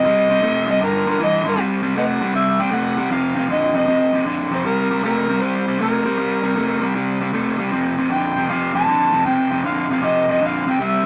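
This rollicking, swaggering blues moves at a brisk 156 BPM in 4/4, with a swung eighth-note feel and a slight sharp tuning at A4 = 441 Hz. An amplified, overdriven harmonica carries the melody from start to finish, its gritty tone colored by light vibrato, tongue slaps and scooped notes in a jazz-inflected style. It takes a featured solo over the opening 1.6 seconds before the piece shifts into a new section. Underneath, a picked, overdriven electric guitar drives a low riff throughout and sits up front with a warm tone. The changes move through C5, G5 and F5 power chords before landing on an Fsus2 at 7.7 seconds, all set in a moderate studio reverb in this short cut from a longer performance.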